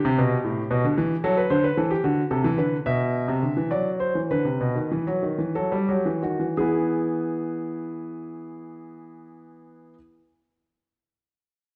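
In a straight 12/8 lilt at 56-77 BPM in dotted quarters that slows from 0.7 to 6.6 seconds, this serious, solemn excerpt of a baroque-style two-part invention for solo concert grand piano, heard up front with deep bass from 0.0 to 10.0 seconds, moves from E minor through F#m7b5 and B to an E chord at 6.6 seconds, all set in a dark production with a wet recital hall reverb.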